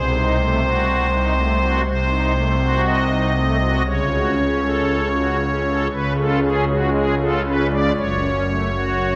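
A pipe organ on soft, shimmering celeste string stops plays alone and up front in this grave, dark chorale-style classical fragment, cut from a longer piece. It moves at a rubato 59 BPM in 4/4, with romantic voicing reaching from F#1 to Eb5, travelling from Cdim7 through F#m/C# and C# to settle on F#m at 8.0 seconds. A wet church reverb with a 2.9-second decay surrounds the organ, and vinyl crackle runs beneath it.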